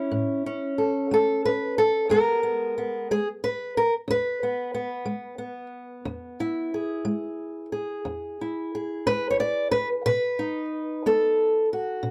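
A close, detailed recording with light reverb puts a lone fingerpicked acoustic guitar up front, its ladder-braced body sounding dark, woody and boxy through old strings. This short excerpt of acoustic country blues, cut from a longer piece, moves at a relaxed 60 beats per minute in a straight 12/8 with a swaggering, laid-back mood. The guitar plays alone for the whole 12.1 seconds, ranging from a low E2 up to D5 in the key of E major, tuned slightly below standard pitch. The harmony opens on A, settles onto E at 2.1 seconds, and reaches B at 10.0 seconds.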